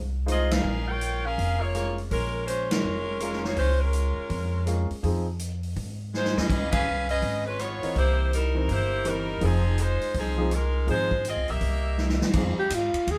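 An edgy, close-miked saxophone section carries the melody with jazz vibrato, riding on top of a dramatic, swinging big band piece in F minor at 164 BPM. Beneath it, a woody pizzicato upright bass plays through the whole excerpt, while a big-room drum kit with a punchy kick, medium-tuned snare, hi-hat, ride, rim clicks and crash cymbals drives the swing. A warm concert grand piano with deep bass comps in the background, dropping out between 5.2 and 7.8 seconds before returning. The band hits accents together, and the drums break into fills, the last of which closes the section around 12.3 seconds as the harmony moves through minor sevenths, a Db7 and tense C7#9 chords. Just after, a warm solo alto saxophone steps forward at 12.6 seconds for a brief phrase before the cut, all set in a moderate room reverb that feels like a band playing live together.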